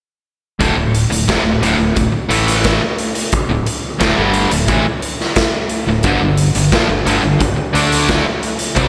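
A big arena sound fills this short classic rock clip, with a lush hall reverb spreading around the band. It has a sunny, swaggering mood in a straight 4/4 feel. Up front sits a raw garage drum kit, gritty and saturated, with a punchy kick, a medium-tuned snare and hi-hat, all ringing in a pumping stone room under a rolled-off top. Two picked, overdriven electric guitars sit further back playing a bright riff, and one carries a slapback echo. A fingered electric bass adds a direct, warm low end, and the whole band plays from 0.6 s, moving from a D5 power chord to G5 at 6.0 s.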